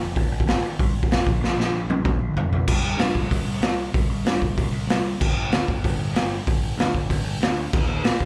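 Heard live through a club's PA with a touch of room ambience, this angry, raw punk rock excerpt in C minor charges along at 190 BPM in a straight 4/4. A growling, bright picked electric bass with overdrive opens at 0.0 seconds, ranging from F1 to Bb2, and a gritty, saturated garage drum kit joins at 0.2 seconds, up front in a small, pumping room with a punchy kick, a medium-tuned snare, hi-hat, crash and toms under a rolled-off top. A drum fill from 1.4 to 2.7 seconds leads into the next section, which drives on to the end of the cut.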